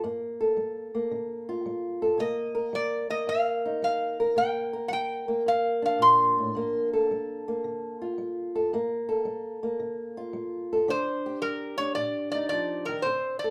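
A metallic, nasal resonator slide guitar, played up front with fingerpicks, carries the brooding melody of this smoky acoustic country blues excerpt in G minor at 110 BPM with a swung 4/4 feel, entering at 2.2 seconds and returning at 10.9 seconds over a dark, boxy, old-strung ladder-braced acoustic guitar fingerpicking accompaniment through Gm9, Cm9 and Ebmaj7, all captured live in one room with light reverb.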